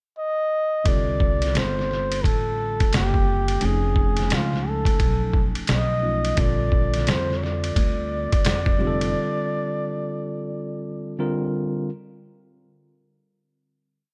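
A digital ambience surrounds this short, mellow, nocturnal jazz-hop piece in C dorian, moving at 87 BPM in 4/4 with a swung sixteenth-note feel. A breathy flugelhorn carries the melody up front from 0.2 seconds, playing a jazz-style solo of motif-based call phrases with vibrato, scooped notes and a smooth top. Beneath it, a clean tine electric piano heard through its built-in speakers holds quartal-voiced chords dressed with grace notes, lasting until 11.9 seconds. From 0.9 seconds a woody, pizzicato upright bass walks with muted ghost notes and chromatic approach notes, while a compressed, pitched-down, sampler-style trip hop kit sits up front with a thumpy kick, a medium-tuned snare and a muffled, small-room character, laying a boom-bap beat under a swung ride cymbal. The bass and drums drop out at 9.1 seconds, leaving the horn and piano to close over harmony that moves from Csus2 through F7alt and Bb6 to Fadd9 before settling on C5.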